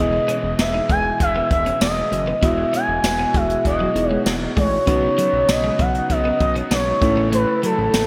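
Uplifting and glossy, this short cut of 1980s-style pop sets a smooth, expressive portamento lead with vibrato up front over a fat, saturated analog bass, a round FM electric piano in the background, and a shimmering, very quiet pulse-width pad holding sustained chords. A twangy twelve-string electric guitar plays a riff, while a crunchy, double-tracked overdriven guitar adds accompaniment, and a jazz brush drum kit with a boomy kick, hi-hat, snare and tambourine enters at 0.3 seconds with gated reverb. The chords move from Emaj7 to Badd9 and then A, all bathed in a lush hall reverb and bright digital production.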